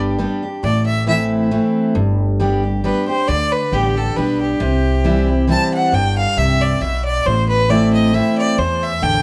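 A clear, biting fiddle carries the melody up front from 0.6 seconds, its bowed line touched with light vibrato, an airy edge and a tape echo, giving this lonesome, rustic bluegrass piece its intense, close voice. Beneath it, a full-bodied jumbo steel-string acoustic guitar picks the accompaniment, while a woody pizzicato upright bass anchors the low end at a swung 136 BPM in 3/4. The chords move through G, Am and C in a moderate studio reverb, and the passage is cut from a longer piece.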